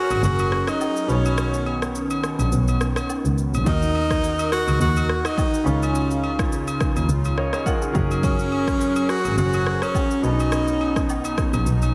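Afrobeats at 105 BPM in 4/4, with a light swing on the sixteenths, this smooth, sultry fragment from a longer piece opens on a break and moves through chords such as Gbadd9, Badd9, Ebm and Dbadd9. A warm, soft-attacked tenor saxophone sits close and up front, singing a jazz-style solo melody with vibrato through an analog delay until 11.1 seconds. Beneath it, a bowed double bass played by one player carries the low end with vibrato and portamento, expressive yet distant in tone. A clear grand piano with long sustain and analog chorus stays in the background, stepping forward with a fill from 7.1 to 8.2 seconds, while a thick, detuned sawtooth-and-square unison pad with slow attack, long release and chorus holds bright sustained chords. An electronic, layered deep house kit with a punchy kick, rim click and shaker drives the groove alongside acoustic agogo bells and woodblock recorded in a live room, and the whole dreamy mix is soaked in a lush hall reverb.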